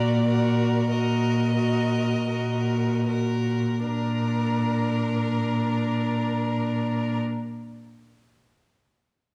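A string quartet opens together in a slow, lyrical classical movement, the four bowed voices sounding at once from the start of this fragment cut from a longer work. A rich, focused first violin carries the melody with vibrato, while the second violin holds a clear, close line beneath it. The viola adds smooth, even accompaniment, and the cello, placed up front and the most prominent voice, anchors the bass with light vibrato. The pulse is rubato and slows through the opening phrase, a minor-tinged chord over a held bass resolving to a serene major harmony at 3.9 seconds. A moderate recital hall reverb surrounds the intimate ensemble, and the strings stop at 7.2 seconds.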